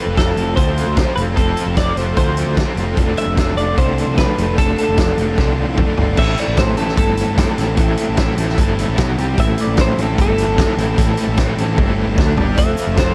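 A loose indie drum kit sits up front in this cool, restless indie rock excerpt at 150 BPM in A minor, its fat snare, punchy kick and dark cymbals coming through saturated and gritty with a rolled-off top. Beneath it, a growling picked electric bass enters at 0.1 s, overdriven and direct, while a raw garage guitar plays an overdriven riff with tremolo. A bright, high-gain distorted guitar plays a riff further back, colored by lush chorus and analog delay. A clean, compressed twelve-string electric guitar carries the melody. Drum fills arrive at 5.4 s and 11.8 s, and from 6.2 s a clean electric guitar solo enters as the chords move from F and Dm/F to Am with quick B5, C5, D5 and G5 passing moments. A very quiet, grainy tube shaker slips in at 12.6 s, all within a dark production with light reverb and small room ambience.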